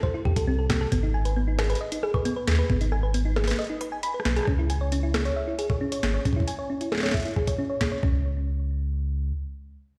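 Eerie and melancholic, this IDM excerpt at 135 BPM in C# minor pairs a round, tine-like thumb-piano synth pluck playing arpeggios with chorus and delay against a gritty, thumpy, pitched-up kick, a booming analog drum machine of bongos, metallic hats, rim click and tonal snare, and a deep sine sub bass with tube saturation that sustains alone from 8.2 to 9.3 seconds, all set in a stone room reverb, with a break and drum fill before a filter sweep runs on the arpeggio from 4.5 seconds.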